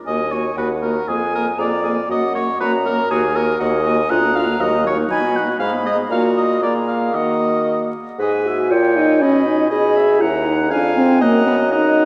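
The recording sits in a vast, echoing space, with a heavy cathedral reverb, a layer of vinyl crackle and a studio ambience around this fragment cut from a longer piece. It is a quick, stormy and dramatic classical-period movement for wind quintet at 119 BPM in a straight 2/4, opening in E-flat minor and turning to G-sharp minor at 8.2 seconds. A hollow, airy concert flute carries the melody with vibrato and a crisp, close-miked attack, while an up-front oboe with light vibrato and a smooth top shapes the second line. A mellow French horn and a warm clarinet fill in the accompaniment, and a distant, roomy bassoon holds the bass in its low register. All five play from the start to 12.1 seconds in a classical style, moving through minor chords, diminished chords and dominant-seventh harmony that heighten the tension.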